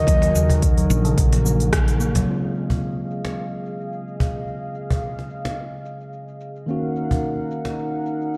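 A round, woody fretless bass with sidechain pumping anchors this meditative organic downtempo fragment, opening alongside a breathy bamboo bansuri phrase, a ringing steel tongue drum arpeggio through digital delay, a deep electronic kick and a snappy cajon, while a smooth, warbling analog pad with chorus sustains chords over a filtered afro-pop kit of crisp hats, rim click and shaker, and at 2.3 s a clean tine electric piano with vintage 12-bit sampler grit enters as accompaniment in a dark, lightly reverberant mix.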